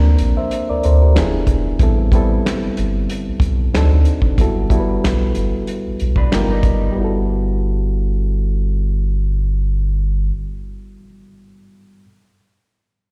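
A round, deep analog bass sits up front and sustains through this soulful, warm neo-soul excerpt at 93 BPM in G major, lightly swung on the sixteenths, while a reedy, bright electric piano with slapback echo plays lush extended chords such as Bbmaj9, Am9 and Gmaj13. A tight soul drum kit with finger snaps, hi-hat, a medium-tuned snare and a rolled-off top drops out at 6.8 seconds, just after a faint, slightly broken-up, lo-fi electric guitar line flickers in at 6.2 seconds. The whole piece sounds like a live gig heard through the venue's PA, bathed in recital-hall reverb. The bass stops at 10.3 seconds, leaving the electric piano to carry on until the cut.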